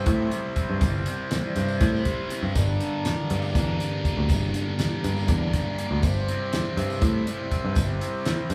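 Hypnotic and dark, this short psychedelic rock excerpt moves at 242 BPM counted in eighths across a lopsided 7/8 metre with a straight feel. A double-tracked fuzz guitar sits up front with a bright, compressed riff, its distortion colored by a phaser, while an overdriven picked bass underpins it with a round, foam-muted tone. A damped 70s drum kit enters at 0.1 s, dry and up front, with a fat snare, tight kick and hi-hat. Behind them a pedal harmonium breathes reedy, mellow sustained chords, moving from C/G to G minor at 2.6 s and back to C/G at 6.0 s. A very quiet tambourine adds jingle from 0.8 s, and the whole band sounds captured live together in one room, with a moderate large studio reverb around the playing.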